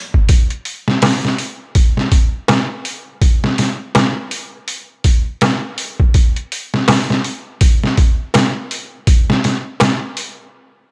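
A sampler-style trip hop drum kit leads this short cut from a longer piece, its pitched-down, gritty sound carrying a thumpy kick, a medium-tuned snare and hi-hat, compressed and placed up front in a small room ambience. The groove sits at 82 BPM in 4/4 with a 59% swing on the sixteenths, giving the cinematic, hypnotic mood a loping, head-nodding pull. A metal-shell darbuka joins at 1.0 seconds, crisp and acoustic, heard close and dry and mixed lower beneath the kit. The whole passage stays within a single section, the drums running from 0.1 to 10.4 seconds before the music stops at 10.5 seconds. A digital ambience frames the recording, adding to its cinematic atmosphere.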